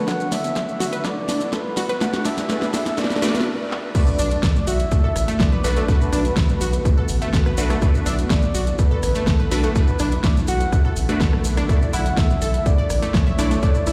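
This bittersweet, driving progressive house excerpt opens with a mellow octave-layered synth lead carrying the melody over a shimmering, ethereal ambient pad, while two bright, detuned unison plucks play arpeggios and stabs under a filter sweep. During the build-up, an electronic kick with a punchy, tape-toned thump and a pop drum kit with a fat snare, metallic hats, handclaps, rim clicks and crash cymbals play a fill, joined by grainy maracas in the background, a very quiet riser and a deep, round analog bass. A brief stop at 3.5 seconds precedes the drop, which lands at 3.9 seconds. The drop rides on sidechain pumping across the lead, pad, plucks, bass and the kit's hats and cymbals, with dub echo trailing the lead and both plucks, chorus on the lead and pad, and a phaser colouring the background stab pluck. The harmony rests on Bm7 and moves to Asus4 at 11.7 seconds, all set in light digital ambience with a large studio reverb.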